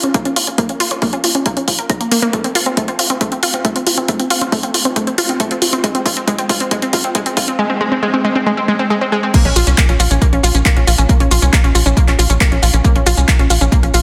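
A dense, heavily limited modern master sits in a moderate recital-hall reverb, giving this short uplifting trance cut from a longer piece a soaring, emotional lift at 137 BPM in straight 4/4, in Bb minor. Up front, a lush, bright unison pluck of detuned sawtooths with a noise layer and a vintage warble spins arpeggios through a digital delay, pumping with the sidechain while a filter sweep moves across it during the build-up. Beneath it, a tight, driving sequencer bass blends sawtooth and square waves into a mellow filter pluck with a fast attack, high-passed and pumping in step. A punchy analog drum machine, tape-warm and re-recorded in a small room, brings crash cymbal, handclaps, hi-hat and shaker, with a fill from 2.3 to 7.6 seconds, all under an electronic kick given the same room treatment. The harmony moves from Bb minor through F5 and Ab, and at 9.3 seconds it returns to Bb minor as the drop lands.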